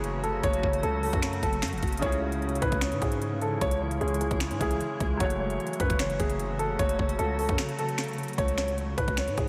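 Trap hip hop in C# minor at 151 BPM with a half-time feel, brooding and hard-hitting, cut from a longer piece and soaked in a dreamy cathedral reverb. A dark baby grand piano carries the melody up front with audible action noise and tape echo, over a soft felt-muted upright piano in the background, a blurred, evolving granular cloud pad, a growling, buzzy 808-style bass, and an overdriven trap kit with knocking kick, sharp snare, crisp hats and finger snaps. After a break beginning at 7.6 seconds, the upright piano and pad stop at 8.4 seconds as the harmony moves from F#m and C#m to a closing C#5 chord.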